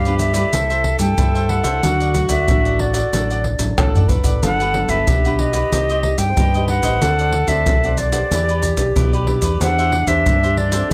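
Close, detailed microphones and very little reverb give this festive, joyful samba and choro excerpt an intimate, present sound, cut from a longer piece in a straight 4/4. A silver concert flute carries the melody up front, its airy, warm metal tone shaped by vibrato and a gentle attack, while a breathy tenor saxophone plays a mellow second line in a jazz style, sitting more distant and roomy with scooped notes and light vibrato. Bright, crisp picked cavaquinho and a thumb-plucked classical nylon-string guitar in the background fill out the accompaniment, and a growling fingered electric bass adds a punchy, overdriven, amp-driven low end. Maracas, pandeiro, a tight surdo and tamborim enter at 0.1 seconds and sit up front with a compressed, saturated edge, including a drum fill from 3.8 to 4.4 seconds. The harmony moves through chords such as G7, Gmaj7, Cmadd9, D7 and Em7 before settling on Cadd9/E.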